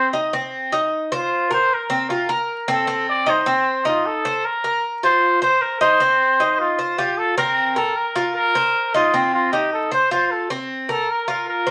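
A straight 4/4 pulse at 154 BPM drives this warm, danceable Latin excerpt, cut from a longer piece and tuned slightly sharp to A4 = 441 Hz. A breathy trumpet carries the melody between F4 and D5, sitting up front with a soft attack, vibrato and a whispered, intimate pop-style tone that has a vintage character, and it takes a solo over the first 4.4 seconds. Beneath it, a Cuban tres picks arpeggios from C4 to C5 throughout, its acoustic double strings giving a metallic ring, with some strings doubled at the octave. The harmony opens on Cm, Bbsus2 and Cm6, then from 4.4 seconds alternates between Bbsus2 and F5. Moderate studio reverb and a layer of vinyl crackle lend the sound a sense of age.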